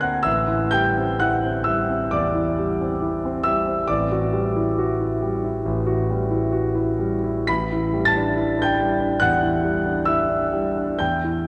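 Impressionist classical solo piano with a hazy, luminous mood, this brief excerpt from a longer piece features a warm, up-front concert grand with deep bass and a natural tone, played with rubato across the keyboard, drifting through Am7, Em9/A and A9sus4 chords and suspended in a long, wet cathedral reverb.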